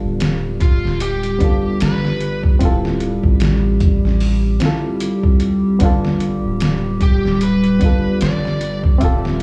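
A smoky, melancholic trip hop excerpt where a muffled, pitched-down sampler-style drum kit with a thumpy kick and overdrive enters at 0.2 seconds up front, over a round, deep dub sub bass, a reedy, worn electric piano with fast tremolo and tape echo, and a warbling, nostalgic pad with chorus, while an overdriven slide guitar carries the melody from 0.6 seconds, all set in a big, reverberant space over G7 and Dm7 chords.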